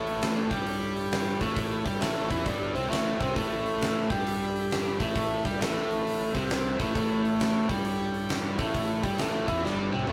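A rough rehearsal-room recording with a moderate stone room reverb gives this short cut from a longer piece a raw, gritty edge. It's swaggering blues rock in the power-trio mould with a southern rock lean, swinging at 134 BPM in 4/4 and sitting in A mixolydian. Up front, a bright, biting overdriven guitar, picked and double-tracked, drives a riff, while a huge arena drum kit enters at 0.1 seconds with a fat snare, punchy kick, hi-hat and toms, closing on a drum fill at 9.6 seconds. Beneath them, a growly fingered electric bass with fuzz and overdrive holds the low end from the background. A very quiet tonewheel organ, lightly overdriven and percussive with second harmonic percussion, vibrato and a fast rotary speaker, adds full sustained chords throughout.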